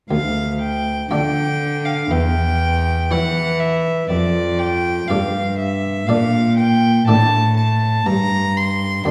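Set back in a reverberant recital hall, this short cut from a longer baroque-style sonata movement in D minor moves at a grave, introspective 60 BPM in 4/4. A single bowed violin carries the melody with a rich, reedy gut-string tone and light period vibrato, while a cello sits up front on the bass line with the same kind of tone. A buff-stopped Italian harpsichord fills in the continuo with muted, lute-like plucked chords, passing from D minor through C# diminished and D minor over F before settling on G at 8.1 seconds.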